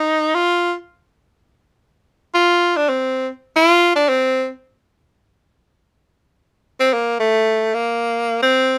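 A lone tenor saxophone opens this short jazz fragment in free time, its edgy, punchy tone carrying a cool, swinging mood. Placed up front and heard through close, detailed microphones with light reverb, the horn plays forcefully in a jazz style with vibrato and scooped notes, moving between A3 and F4. The solo runs for the full 8.8 seconds, with a restatement of its opening idea arriving at 6.5 seconds.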